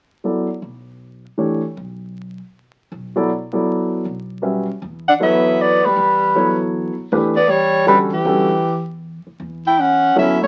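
This excerpt sounds like a very old 78 rpm record, with vinyl crackle and a wet studio reverb around a searching, cool modal jazz piece in E dorian, swinging in 3/4 at 157 BPM. A warm grand piano sits up front from the start, joined almost at once by a woody, dark, thumpy pizzicato upright bass, and the harmony moves from E7sus2 to Em9 and then A6. At 5.1 seconds two saxophones enter together with light vibrato and a breathy subtone: a soprano carrying the melody up front, and a close-miked tenor with a soft attack playing a second line beneath it.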